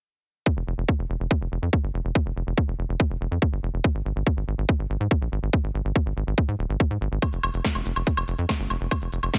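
Intense and alien, this short psychedelic trance excerpt at 142 BPM opens with an overdriven, tight electronic kick up front, joined almost at once by a punchy sawtooth-and-square sequencer bass with a fast-attack filter pluck, before an overdriven big-room drum kit of crisp hats, punchy snare and woodblock arrives at 7.2 seconds in a dry, close mix.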